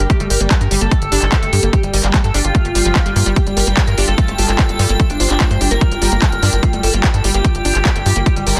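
A heavy, overdriven electronic kick drives a straight 4/4 pulse at 147 BPM alongside a techno drum kit of handclaps and smooth hi-hats that also carries overdrive. Up front beside the kick, a tight sequencer bass in G minor plays punchy, driving notes with a wave-folded, filter-plucked tone and a moving notch. From 0.1 seconds, a gritty, screaming synth lead with a guitar-like bite carries the melody through phaser and tape echo, with vibrato and sidechain pumping. Further back, a lush unison pluck repeats a riff coloured by cassette tape and tape echo. A dark, pulsing gated texture holds sustained chords with chorus, and a cloudy, evolving granular pad sits on a high G; both pads pump with the sidechain. This excerpt of a psychedelic trance track feels alien and intense, with light reverb and a dense, heavily limited modern master.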